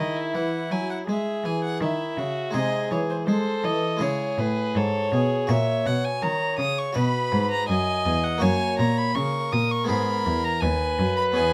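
Dance-like and radiant, this 11.5-second passage from a longer baroque-style sonata movement with continuo moves at 82 BPM in a straight 4/4, with the harmony shifting from C#m through F#/A# and B toward a close on G#m. A single period-style violin carries the melody up front, its gut-string tone warm and reedy as it ranges from G#4 to D#6. A second violin, darker and more nasal with a smooth top, bows a lower line between E4 and D#5. A Flemish-style harpsichord with one set of strings supplies bright, plucked, mid-forward accompaniment across a span from D#2 to D#5. A close, rich cello anchors the bass between D#2 and G#3, and all four parts play throughout in a moderate small room that lends a brief ambience.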